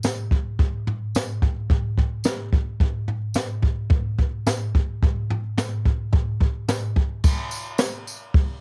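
A straight 4/4 rock groove with a rowdy, swaggering mood comes from an up-front jazz brush drum kit, dark and smooth with a boomy kick, high-tuned snare, toms, hi-hat and crash, colored by cassette tape, while a jingly, bright tambourine sits low in the mix of this dry home cassette recording, cut from a longer piece and shifting to a new section at 7.2 seconds.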